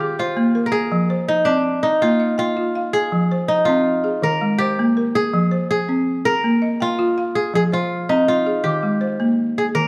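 Hypnotic and reflective, this short cut from a longer West African traditional piece moves at 109 BPM in 12/8 in F minor, with a crisp, ringing, fingerpicked kora carrying the melody up front while a woody, buzzing balafon struck with hard rubber mallets plays arpeggios beside it, both sounding for the full 9.9 seconds inside a recital-hall reverb and a dark, warm production.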